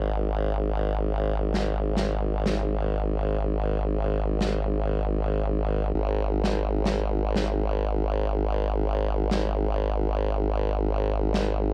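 Playful and gritty, this glitch hop cut moves at 98 BPM in 4/4 with a 62% swing on the 16ths, tuned to A4 = 438 Hz. A wobbling formant-sweep bass carries it from the start, blending sawtooth and sine tones through a formant filter, compressed and sitting up front with chorus and tube-saturated grit down around G#1. A high-tuned acoustic snare joins at 1.5 seconds, heard in a small, pumping room, while the overall mix stays dry and carries a transformer-saturated edge.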